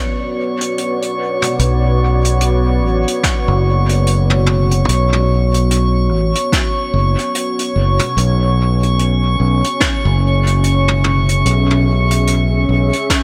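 A small room with light reverb frames this deep, spacious ambient dub fragment at 73 BPM, swung on the sixteenths in B dorian, moving from Bm to C#m7 at 8.2 seconds. A moody, detuned sawtooth pad with a sub octave and 12-bit sampler grit holds slow-attack chords under a glassy texture of drifting overtones, both chorused and bathed in their own reverb. Jazz brushes on hi-hat, high-tuned snare and toms carry dub echo with a rolled-off top from 0.6 seconds, a growly, up-front overdriven fingered bass enters at 1.6 seconds, and an overdriven electronic kick joins at 3.2 seconds.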